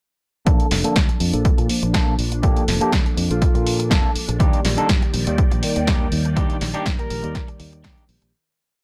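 Filtered disco house in Bb major at 122 BPM, with a light 16th-note swing and a sunny, joyful feel, running as one continuous groove under a filter sweep from 0.5 to 8.3 seconds and a fade-out that begins at 5.7 seconds. An electronic kick sits up front with a tape-warm, four-on-the-floor thump, while a punchy analog drum machine supplies programmed hats and a backbeat snare, its hats pumping against the kick. A fingered electric bass, growly and tube-saturated, drives a funky syncopated line, and an electric guitar at the edge of break-up picks a close-voiced funk chord rhythm. A bell-like tine electric piano carries held chords with syncopated pushes, roughened by vintage 12-bit sampler grit and a phaser, as a swirling, warbling string machine pad sustains in the background. From 2.8 seconds a clear horn section with light vibrato adds short, tight phrases over the move from Bbmaj7 to Ebmaj7, all in a dry, close sound with little reverb.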